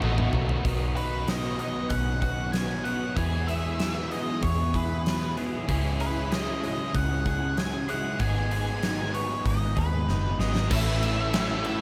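An octave-fuzz lead guitar, distorted with tape echo, carries the melody from 1.0 s over a hazy, dreamy shoegaze and dream pop rock groove in B mixolydian at 95 BPM, moving through chords like Badd9, Emaj7 and C#madd9. A huge arena drum kit sits up front with bright cymbals, a fat snare, a punchy kick and fills, while a dark, round, foam-muted fingered bass anchors the low end. Behind them, a cranked stack guitar with reverse reverb and two overdriven, compressed guitars thicken the riff. One of these two is double-tracked; one carries subtle chorus, while the other is heard only briefly before returning at 10.7 s. Alongside them sit a very quiet twangy clean guitar playing arpeggios and a swirling, warbling phased string machine, all in a small room ambience.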